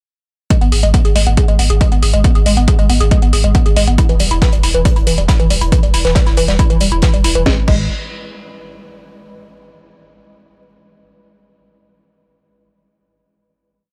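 Set in a digital ambience, this short, complete piece is driving peak-time techno at 138 BPM in 4/4 with a straight feel, in G# harmonic minor, and its mood is intense and hypnotic. From 0.5 seconds a punchy, layered electronic kick drives a four-on-the-floor pulse. Around it, a programmed techno kit adds metallic closed and open hats, a cracking snare backbeat and crash, and a round, sine-based sub bass fills the low end with a deep rumble between the kicks, thickened by tube saturation, a low-pass filter and sidechain pumping. Over this, a woody, wave-folded pluck with a noise layer and a filter sweep repeats a 3-step sequence that drifts against the bar, its organic, warbling, vintage tone coloured by chorus, digital delay and its own pumping. At 4.0 seconds the harmony moves from G# minor to E minor, and an acoustic studio kit enters in the background with a looped, edited breakbeat of high-tuned snare and rolled-off hats. 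The groove runs until 7.5 seconds, after which the piece closes on a short tail.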